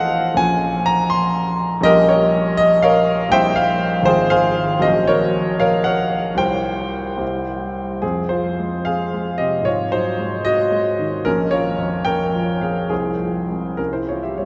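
Romantic classical character piece for solo grand piano in F minor, stormy and brooding, moving in a rubato 6/8 at roughly 67-83 BPM, where the polished, present instrument with long sustain sits up front and spans Ab1 to C6, a wet cathedral reverb surrounds it, and this fragment cut from a longer work shifts from its opening section into a second one at 8.0 seconds before resting on a C chord at 13.8 seconds.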